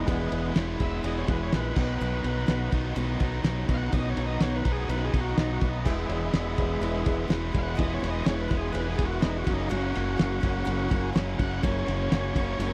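An overdriven tonewheel organ takes the lead with a thick, gritty solo through a slow rotary speaker and tape echo, carrying this short cut from a longer piece of driving, swaggering classic rock in a straight 4/4. Beneath it, a growling fingered electric bass sits up front, round and punchy with overdrive, while a cloth-damped drum kit thuds along in the background with a fat snare, tight kick and dark, muffled cymbals. Two picked electric guitars, one overdriven and one tightly distorted, play bright riffs further back, and a very quiet steel-string acoustic guitar adds picked accompaniment with an audible finger squeak. A worn, slightly detuned upright piano joins at 5.8 seconds, faint and woody. The chords move from E to B, back to E and on to F#, all captured in a dry, close 1970s-style studio sound with little reverb.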